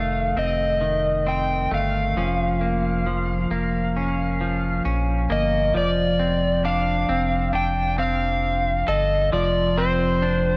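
Dream pop at 67 BPM in F mixolydian, ethereal and floating, this excerpt is cut from a longer piece and runs through two sections, the second arriving at 5.7 seconds as the chords move from F7 and Bbm/F to F6 and a rootless Bbadd9/F. An overdriven slide guitar carries the melody between C5 and G5 through tape echo, while a clean, hollow-bodied semi-hollow electric guitar plays picked arpeggios bathed in lush chorus and echo, and a round analog bass holds deep, dark, sustained notes from F1 to Bb1. A moderate plate reverb and the worn, warbling pitch drift of old cassette tape soften the whole sound.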